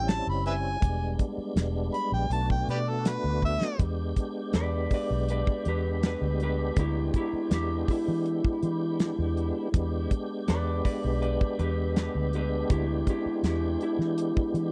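A warm, overdriven harmonica with vibrato, tongue slaps and scooped notes opens this laid-back, rollicking straight-eighth soul blues at 81 BPM, giving way after a drum fill at 3.4 seconds to a dark, slightly broken-up electric slide guitar solo played with fingerpicks, over a full tonewheel organ with chorus vibrato and slow rotary speaker, a round, punchy foam-muted fingered bass and a dry 70s drum kit with a fat snare and tight kick, all in a close, small-room 1970s-style sound.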